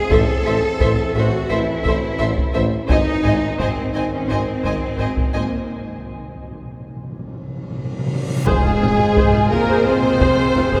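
A heroic, dark orchestral film cue in F minor at 86 BPM opens with warm French horn chords over a rich, close cello section and a drumming taiko ensemble, joined by distant, intense violins, smooth violas, tuba and double basses in a cathedral-like reverb, before a break at 5.7 seconds brings soft-mallet timpani, a huge reverse cymbal leads into an impact at 8.5 seconds, and a pure, very quiet flute section and focused strings enter.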